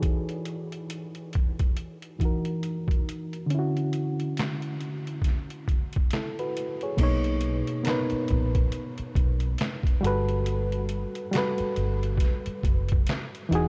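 A loping 69 BPM groove in 4/4, swung on the sixteenths, comes from a gritty, pitched-down trip hop sampler-style drum kit with a thumpy kick, a medium-tuned snare, hi-hat, handclaps and crash. This mellow, nostalgic lo-fi hip hop cut is in B major and sits in light reverb. Up front, a reedy, worn and slightly out-of-tune electric piano with a cassette-tape sheen plays major-ninth chords from Emaj9 to Dmaj9, then Bmaj9 to Gmaj9, and a dark, foam-muted, round electric bass joins at 7.0 seconds with punchy low notes.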